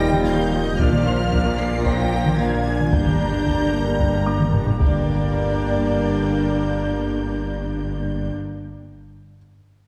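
Over straight, relentless 4/4 drumming from background taiko drums with heavy sticks, capped by a fill at 4.5 seconds, this tense hybrid orchestral and electronic film cue sets an intense, distant high violin melody against a smooth studio violin second line, focused violas in the background, mellow French horns, roomy trombones, a very quiet rich cello section, lush double basses, a deep saturated sub bass and a dark, shimmering chorused pulse-width pad, while a soft felt-muted upright piano adds intimate texture until 5.1 seconds, the whole ensemble heard from further back in a wet scoring-stage reverb.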